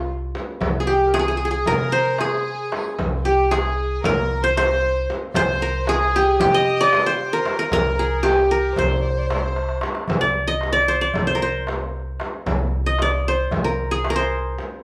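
In a straight 9/8 at 228 BPM counted in eighths, this longing, melancholic Turkish makam ensemble piece in C makam ussak puts a bright-edged, fingerpicked qanun up front on the melody, shadowed by a clear alto saxophone with vibrato in the background and a reedy, gut-toned bowed violin section that both fall away at 9.8 seconds, while a woody pizzicato upright bass, a crisp, distant metal-shell darbuka and a deep frame drum carry on through a drum fill at 9.6 seconds into a new section in a live, moderately reverberant large room.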